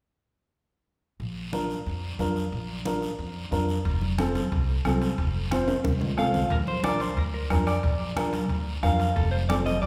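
Cumbia at 181 BPM in Bb major, sunny and joyful, opening at 1.2 s with a growly pizzicato upright bass, hard-handed background congas and a raspy, saturated guiro, joined at 1.5 s by a dark, mellow upright piano up front and at 3.9 s by a soft-beatered vintage bombo and ringing metal-shell timbales. A drum fill begins at 5.7 s, and a clean, scooped, picked electric guitar melody with spring reverb enters over it at 6.2 s, all set in a lush recital-hall reverb.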